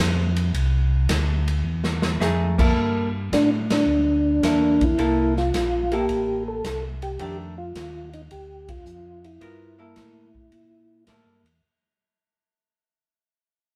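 Swinging and greasy, this soul jazz organ trio cut rides a round, dark tonewheel organ bass line with light overdrive, chorus vibrato and a slow rotary speaker, while an airy, polished big-band drum kit swings on crash, ride, hi-hat, punchy kick and a medium-tuned snare. After a drum fill, a clean, hollow-body archtop guitar enters at 2.2 seconds with picked accompaniment, and a soft, flute-like percussive organ takes the melody at 3.3 seconds over C13, F6 and Gm13 harmony, with band accents punctuating the groove at 3.6 and 8.6 seconds. The band plays live in one room under a wet studio reverb, and the whole passage sits within a fade-out.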